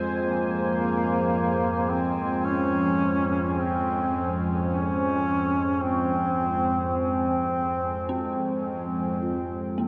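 A deep, moody pad with chorus sustains an F minor chord over a tense, string-like bowed drone with phaser and vibrato, while an eerie, inharmonic synth bell with delay traces arpeggios in the background of this dark, cavernous ambient drone at a slow 53 BPM. From 0.2 seconds a distant, folk-style duduk carries the solo melody up front, its scooped notes and vibrato trailed by delay, all set inside a cathedral reverb with a 6.2-second tail. At 9.2 seconds a ringing, metallic bronze singing bowl with slow beating appears quietly in the background before the cut from the longer piece.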